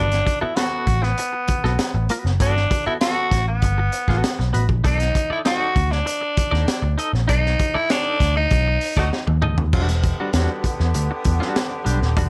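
Funk at 98 BPM with a funky, hypnotic mood, this excerpt sets a breathy, raspy tenor saxophone melody up front over a foam-muted, round picked bass, a clean semi-hollow guitar with tremolo, and a crunchy breakbeat kit with a punchy kick, high-tuned snare and dark cymbals, all in a small room reverb. The band hits accents from 7.3 seconds, the drums play a fill, and a distant horn section with light vibrato enters on the second line at 9.0 seconds, just before the saxophone stops at 9.2 seconds. The harmony moves from Gmaj9 through B7#9 to Em9.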